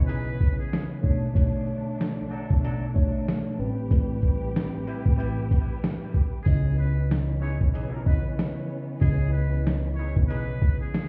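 Boom-bap hip-hop at 94 BPM in C# phrygian, this moody, reflective fragment of a longer piece has a swung sixteenth feel, built on a gritty, thumpy sampler-style drum kit of kick, snare, hi-hat and shaker and a dark, round hollow-body electric bass, both up front. A mellow tine electric piano colored by cassette tape carries the chords through C#m9, Bm9 and Am9, backed by a lush bowed string section with vibrato and portamento and distant, tight jazz horn stabs with delay. A buzzy, breathy muted trumpet plays the solo melody briefly at the start and returns from 6.4 seconds, while the mix sounds muffled as if heard through a wall, with stone room reverb and vinyl crackle.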